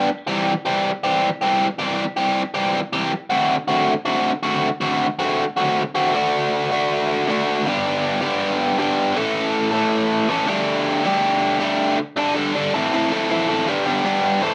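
A rough home-demo mix soaked in wet studio reverb carries this upbeat, jangly rock fragment at 159 BPM in a straight 4/4, where a biting, bright, overdriven electric guitar, picked, double-tracked and sitting up front, plays a solo from 0.0 to 14.5 seconds across a range of G2 to A4, moving from C and D5 through D, G, A and Dsus4 before settling on Am and G as the clip is cut from a longer piece.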